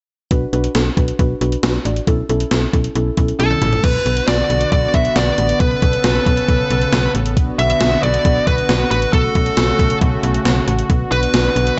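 Cool and driving, this synth-pop excerpt in B minor at 136 BPM opens with muted, felt-like synth keys, a snappy slap-like FM bass and a gated 80s digital drum machine with thumpy kick and gated reverb snare. Alongside a drum fill at 3.4 seconds, a dark fuzz lead guitar with delay takes the melody, while a brassy, warbling analog pad sustains chords from 3.8 seconds over a Bm, Aadd9/B and F#m/B progression, all in a light digital ambience.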